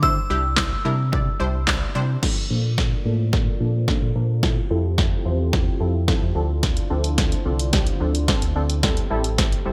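A brief, glassy FM synth bell opens this carefree, upbeat dance-pop excerpt over a lush, detuned unison pluck, a deep sub bass with octave, and a punchy analog drum machine of kick, snare, hi-hat, handclaps and crash cymbal, with the pluck and bass pumping under sidechain. At 2.2 seconds a shimmering, retro pulse-width pad enters low in the background as a build-up and drum fill carry the chords from Bbmaj7 through Fmaj7 and Dm7 to Am7. Light reverb and bright 1980s-style digital production frame the up-front drums.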